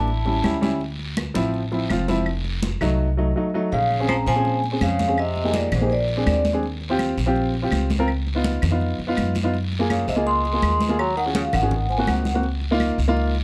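A driving, fiery Afro-Cuban jazz groove at 165 BPM in straight 4/4 is carried by thick-skinned, hard-hand congas with a compressed, saturated edge, a raspy guiro, background claves and a thumpy, up-front pizzicato upright bass, while an intimate baby grand piano with audible action noise and short sustain comps throughout. In short bursts starting at 0.0, 3.7 and 9.9 seconds, a ringing vibraphone with slow motor vibrato carries the melody over a distant, subtoned tenor saxophone second line with scooped notes. The music settles into Bb minor from 3.7 seconds and moves through rich extended jazz chords under light reverb, and this cut is taken from a longer piece.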